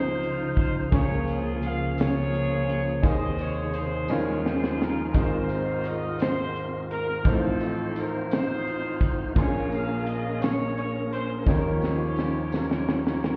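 A tight funk drum kit sits up front with a high-tuned snare and tight kick, adding fills at 4.1 and 11.5 seconds beneath this uplifting, soulful slow gospel piece in 6/8 at 57 BPM in Ab major, moving through rich chords such as Dbmaj9, Eb9sus4 and Bbm9. A clear baby grand piano with audible action noise provides accompaniment alongside a tonewheel organ's full, lightly overdriven sustained chords through a slow rotary speaker and chorus vibrato, while a tight vintage horn section carries the melody with light vibrato and a very quiet, jingly tambourine enters at 0.9 seconds. The whole cut sounds muffled, as if heard through a wall, with stone room reverb, and it is taken from a longer piece.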